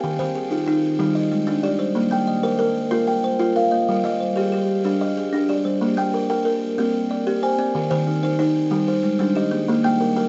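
A mellow, woody sound in moderate studio reverb carries this 10.3-second excerpt of southern African traditional music, a rippling mbira-style interlocking cycle in 12/8 at 124 BPM in Bb mixolydian, where an up-front buzzing kalimba with a soft, airy fingertip pluck and a second, thumb-plucked kalimba spin ringing arpeggios on solid boards through chords moving from Eb to Gm and on to Cmadd9/Eb.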